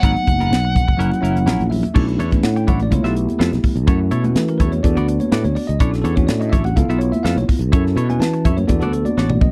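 The tight funk drum kit stands out most, sitting up front with a high-tuned snare, a tight kick, airy cymbals and toms in a dry, polished sound, and closing with a fill from 9.2 s. This intense, slick electric jazz fusion excerpt moves at 125 BPM in a straight 4/4, centred on B minor, with a growly, direct fretless bass sustaining low notes beneath it. A smooth overdriven lead guitar, bright and picked with a slapback echo, states a brief melody only until 1.7 s, while a bell-like tine electric piano comps throughout and adds a fill just before the harmony shifts at 2.0 s. A twangy, compressed clean guitar with subtle chorus plays quiet stabs, and thin-skinned, high-tuned congas enter at 0.3 s, very quiet and distant as if in a large room. The chords move from G#m9 and F#7 into a repeating cycle of Bm11, C#7alt, F#m7 and E9sus4, all captured in a close, dry 1970s-style studio sound.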